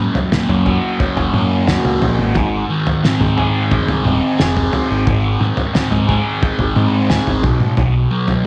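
Psychedelic rock with a trippy, hypnotic mood, taken from a longer piece and moving at a steady, straight pulse in four. A double-tracked fuzz guitar sits up front playing the riff, its distorted, picked tone colored by a phaser. Beneath it, a cloth-damped drum kit of kick, snare and toms comes in at 0.1 seconds with a muffled, gritty, lo-fi character, a fat snare and a tight kick. An overdriven picked electric bass joins at 0.5 seconds, dark, direct and round in the low register. The harmony shifts from Gb to Ab and lands on Cb near the close, all bathed in a moderate echo-chamber reverb with a 2.3-second tail.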